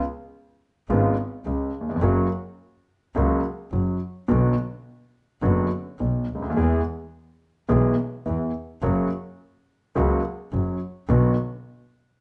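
From 0.9 s, an intimate, up-front concert grand piano with audible action noise, deep bass and long sustain carries the accompaniment of this melancholic, tense tango fragment in a rubato 4/4 at 106 BPM, entering together with a single close, biting bowed double bass with vibrato and airy bow, over chords moving C#, F#, Bm, E, F#, Bm in B harmonic minor, all set in a moderate large-studio reverb with a dark, warm production.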